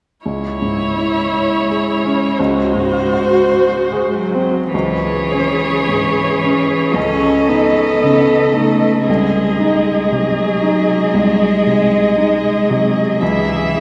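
Melancholic and solemn, this slow romantic movement for piano quintet in C# minor unfolds with rubato at 46-58 BPM, cut from a longer piece and bathed in a cathedral reverb of a church or concert hall. An up-front violin carries the melody with vibrato and portamento, its tone rich yet distant, while the viola, similarly expressive and distant, fills in the accompaniment and a close, smooth cello sings an even second line. A present, warm baby grand piano underpins the strings throughout, shifting at 4.7 s into a second section that drifts through the harmony before settling on C# minor at 13.2 s.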